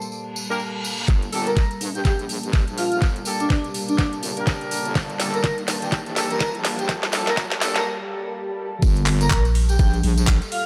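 A dark, warm mix with a light digital ambience frames this gritty, bouncy bass house clip in G minor, cut from a longer piece and moving at 124 BPM with a swung sixteenth-note feel. A deep, moody ambient pad holds a Gmadd9 chord from the start, pumping against the sidechain under chorus and its own reverb, while a jingly acoustic tambourine plays along and a reverse cymbal sits in the background. At half a second, vintage jazz-style horn stabs join, punching through tightly with a low-pass filter and tape echo. At 1.1 seconds the build-up begins: a knocking, layered electronic kick lands up front, a garage kit adds cracking snare, handclaps, metallic hats and ride, and a heavy, saturated wobble bass rolls in with a mellow chorus and high-pass filtering. An airy, dreamy lead then drifts above with phaser, vibrato and echo as a riser, drum fill and filter sweep climb toward a short break and swell. 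The drop arrives at 8.8 seconds, and at 9.3 seconds a brief, overdriven FM bass hits hard and metallic on Bb1.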